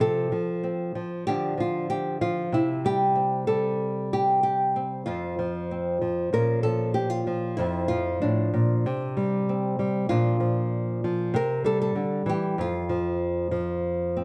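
Folk fingerstyle in a nostalgic mood, this brief cut from a longer piece features a lone fingerpicked nylon-string guitar, small, warm and up front, caught by close, detailed microphones with a faint mains hum and set in a moderate, large studio reverb, moving through chord changes that include a darker Bbm before settling into an unharmonized close at 12.6 seconds.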